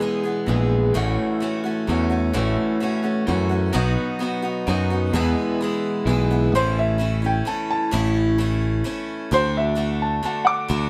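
Moving in a straight three-beat pulse, this jangly, open-road rock excerpt cut from a longer piece sets a bright, boxy parlour acoustic guitar with audible finger squeak against a slightly broken-up, compressed electric guitar riff from a small old amp that drops out at 6.5 seconds, when a dark, mellow grand piano with short sustain takes a solo melody over the direct, up-front picked electric bass, all captured as a band playing live in one room with light reverb.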